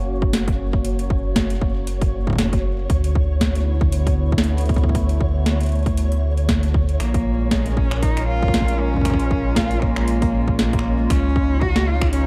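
A swung 4/4 groove at 117 BPM drives this short, playful yet wistful IDM passage in F# major, with a heavy electronic kick and a booming analog drum machine of finger snaps, metallic hats and a crisp snare, treated with digital delay and re-recorded in a large room, over a round sine sub bass. A hollow, flute-like pad with chorus and 12-bit sampler grit holds sustained chords moving from F# through D6 and A#m7 to C#7, while a flickering granular texture glints high above in its own reverb. At 7.0 seconds an up-front cello, played by a single bowed player with vibrato and portamento and trailed by tape echo, joins the mix, lending expressive weight to the dark, digital ambience.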